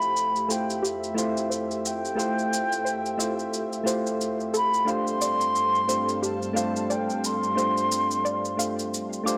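Relaxed and warm, this short sunset chillout excerpt moves at 89 BPM in 4/4 with a gentle swing on the sixteenths, its harmony resting on Fmaj9 before shifting to G7sus4 at 4.9 seconds. A baroque flute carries the melody, airy and woody with vibrato and tongued notes, sitting up front yet sounding distant, and it falls away at 8.6 seconds while the rest play on to the end. Beneath it, soft electric-piano-like synth keys provide a round, warbling, vintage accompaniment with chorus and tape echo. A silky string machine holds sustained chords with slow attack and ensemble chorus, and a filter sweep runs through it, while a dark, detuned round pluck spins arpeggios in the background with its own filter sweep, chorus and tape echo. An electronic shaker keeps time, and the whole is placed in a moderate scoring-stage reverb over a dry, gritty hardware recording with transformer saturation.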